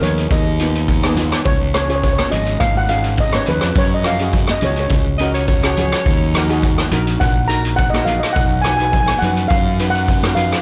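A straight 4/4 calypso groove at 104 BPM in F# major, carried by an up-front street-band drum kit with a boomy kick, hi-hat and rim click, and soft-handed, high-tuned congas ringing in the background, sets a sunny, carefree mood in this short cut from a longer piece. A mellow steel pan played with soft rubber sticks takes the melody throughout, over a second shimmering pan comping on medium rubber sticks and a dark, round fuzz bass with tube saturation. A smooth alto saxophone with vibrato and scooped notes slips in a brief jazz-style line between 5.2 and 6.6 seconds, and the whole recording sounds blown-out and overdriven with a light reverb.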